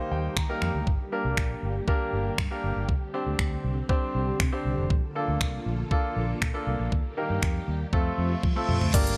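A bright, 1980s-style digital production with light reverb frames this short dance-pop excerpt in G minor, moving at 119 BPM in a straight 4/4 with a bittersweet yet confident mood. A clear, polished baby grand piano sits up front from the first moment, opening with a fill in the first 0.9 seconds before carrying the accompaniment, its pulse shaped by sidechain pumping. Underneath, a dark, round and punchy muted electric bass adds foam-muted weight. Further back, a mellow string machine with a cello voice holds slow-attack sawtooth chords, thickened by a sub octave, phaser and ensemble chorus, and it also pumps with the sidechain. A smooth R&B drum kit enters at 0.4 seconds, electronic and tape-tinged, with a knocking kick, metallic hats, finger snaps, shaker, toms and crash cymbal. The chords move through Eb, Gm, Csus2, Bbmaj7, Eb and F, and near the end an electronic reverse cymbal and a drum fill lead toward the next section.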